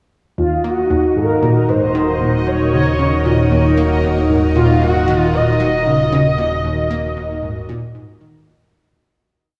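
Hypnotic and cosmic, this short piece of sequencer-driven space music sets a round, wave-folded analog pluck cycling a 12-step loop that drifts against the bar beneath a lush, vintage string machine holding slowly shifting chords, while a smooth, up-front synth lead with vibrato traces arching motifs and a resonant, bubbling stepped-filter texture holds one high note in the background, all soaked in lush hall reverb before a fade-out from 5.9 seconds.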